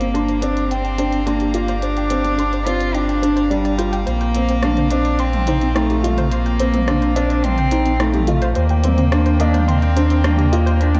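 A straight 4/4 pulse at 107 BPM comes from a minimal click drum kit of clicky hi-hats, rim clicks and toms, electronic in character and re-recorded in a small room. This melancholic, moving piano and strings electronica passage, cut from a longer piece and framed as a build-up, moves through Gm7, Bbsus2 at 4.1 seconds and Ebmaj7 at 8.6 seconds. Up front, a single bowed cello with a nasal, gut-string period tone and light vibrato carries the melody between G3 and F4, while a round sine sub bass holds the low end deep and close. A felt-muted upright piano plays a mellow, intimate riff with audible action noise until 10.7 seconds, and a distant string quartet sustains reedy chords through a low-pass filter in the background. Behind them, a detuned analog pluck of sawtooth and square waves with a noise layer spins arpeggios through chorus and delay, its filter sweeping across the whole passage, all set in a moderate echo-chamber reverb with a dark production.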